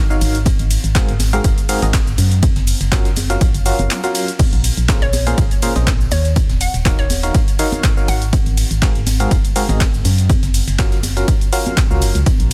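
Dry and dense, this heavily limited piano house clip, cut from a longer piece, feels bittersweet and energetic with a light swing on the sixteenths. A barking FM electric piano with a biting, noisy edge carries the riff throughout, treated with chorus, tremolo, tape echo and sidechain pumping over chords that move from Ab13 through Gbmaj7, Bbm9 and Ebm9. Beneath it, a dark, organ-like FM bass with tube saturation pumps against a punchy, layered electronic kick that sits up front, while an overdriven analog drum machine adds crash, handclaps, hi-hat and shaker. Further back, a gritty, pitched-up breakbeat kit with a high-tuned snare and filtered, pumping cymbals and hats joins ringing tambourine and hard-hand congas. A hollow, bouncy square-wave pluck with a detuned sub-octave layer, chorus and tape echo flickers at the start, then returns for a melody from 5.0 to 8.4 seconds after a brief break at 3.9 seconds.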